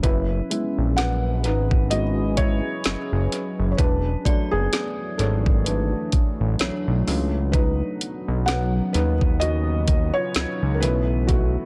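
A soft, felt-muted upright piano leads this dreamy, romantic contemporary R&B excerpt at a relaxed 64 BPM with a swung 16th feel, moving through F#9sus4, E9sus4, C#9sus4 and B9sus4 over a fat, detuned sawtooth analog bass, an up-front electronic drum kit with a knocking kick, woody snare and tape-toned hats fed through analog delay, and a deep, moody ambient pad sitting in the background with chorus, built-in reverb and sidechain pumping, while an inharmonic FM synth chime rings faintly from 4.3 to 7.5 seconds in an otherwise dry but echo-heavy mix.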